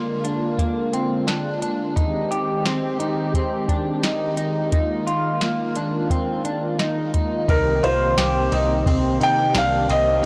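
A smooth, detuned sawtooth analog pad with chorus and a slightly broken-up, compressed electric guitar picking arpeggios through analog chorus and digital delay open this blissful, floating dream pop fragment at 87 BPM, joined almost at once by a dry, soft vintage rhythm box with deep kick, crisp snare, metallic hi-hats, ride cymbal and tambourine, until at 7.5 s a felt-muted upright piano carries an intimate melody with audible action noise and delay over a dark, round, foam-muted picked bass, captured in a blown-out, overdriven recording with light reverb and lossy compression artefacts.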